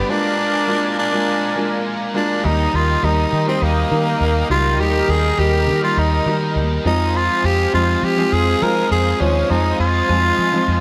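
Pop at 102 BPM with a glossy, romantic mood, this excerpt puts a raspy, gritty tenor saxophone melody up front over polished grand piano, a bright, scooped high-gain guitar with distortion and chorus, and a smooth, detuned sawtooth pad in the background, all in moderate spring reverb, before a dark, round, foam-muted fingered electric bass enters at 2.4 s as the harmony moves from Bb7 to Eb and then Fm7.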